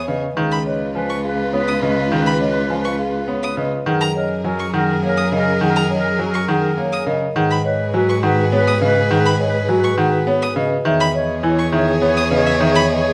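Classical minimalist pattern music in 3/4 at 103 BPM, this short cut from a longer piece in G# minor feels urgent and hypnotic, its harmony moving through C#7, F#add9, G#m7 and E6. A marimba with soft mallets carries the melody in a woody, mellow, slightly vintage tone, while a second marimba with medium mallets spins darker, smooth arpeggios beneath it. Above them a single bowed violin runs focused arpeggios with vibrato, and a close chamber violin section holds expressive sustained chords. A bright baby grand piano sits up front as accompaniment, brilliant and intimate with audible action noise and long sustain, and a rich, bowed cello anchors the bass. A distant, roomy clarinet adds a second line, and the whole ensemble sounds through close, detailed microphones in a moderate recital hall reverb.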